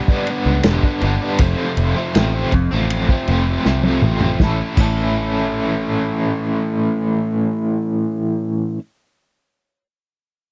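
A biting, overdriven electric guitar sits up front, double-tracked and bright with tremolo, driving a dark, trippy psychedelic rock riff at 80 BPM over chords moving from G to F and then to A at 4.4 seconds. A vintage acoustic drum kit, muffled and lo-fi with dark cymbals and a tight kick, plays until 5.0 seconds, with a fill from 3.6 seconds leading into the new section. A round, foam-muted picked electric bass holds the low end in this dry, close 1970s-style studio recording cut from a longer piece.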